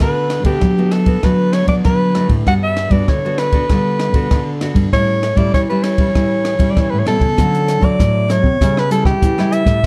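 A breathy soprano saxophone carries the melody up front, its mellow, whispered subtone and soft attack giving this short cut from a longer samba and choro piece an intimate, jazz-style voice, set in plate reverb. Beneath it, one nylon-string guitar fingerpicks a bright, classical accompaniment while a second, darker nylon-string guitar supplies the bass line, thumb-plucked with audible finger squeak. A compact cocktail drum kit keeps a straight 4/4 at 98 BPM with hi-hat, ride cymbal, rim click and a punchy kick, its smooth sound close and up front in a small room with a rolled-off top. The harmony moves through Bm7/D, Gmaj7 and A7 before a new section arrives at 7.4 seconds on Dmaj7 and A7/C#. The mood is sunny and joyful, wrapped in a dark, warm production with light reverb, and all four parts play together throughout the 9.9 seconds.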